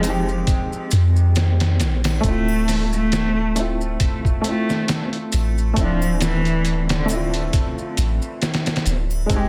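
A slow, swung 4/4 groove from a sampler-style trip hop kit carries this dark, melancholic excerpt, with a thumpy kick, a medium-tuned snare and hi-hat that sound pitched down, gritty and tape-warm, as if re-recorded in a small room and set up front. A deep, round, sine-like 808-style bass with a fast attack and decaying tail sits prominently beneath, while compressed, saturated maracas and triangle add a faint acoustic shimmer. Over the harmony, which shifts from Fm7 to Dm7 at 2.2 seconds, a single bowed cello carries the melody with expressive vibrato and portamento, sounding distant and colored by tape echo. A felt-muted upright piano accompanies in a mellow, intimate voice with short sustain, colored by harmonic tremolo and tape echo of its own. At 9.3 seconds a warbling, detuned, lo-fi pad creeps in, barely audible, just before this fragment of a longer piece cuts off, all set in studio reverb with a dense, heavily limited modern master.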